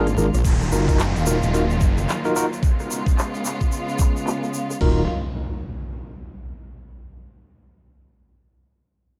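Captured at home on cassette with light reverb, this gritty, playful glitch hop fragment in Eb minor moves at 110 BPM with a swung 16th-note feel. A heavy, saturated wobble bass with chorus and a knocking, up-front electronic kick anchor the groove, while a lush bowed string section holds sustained chords roughened by 12-bit sampler grit and sidechain pumping, and a bright tine electric piano plays stabs through analog delay. A drum and bass kit with metallic hats, handclaps, rim clicks and crash, under a filter sweep from 0.4 s, sits beside a grainy tube shaker, and an electronic downlifter and impact carries on alone once the other parts stop near 5 s, running to 7.0 s.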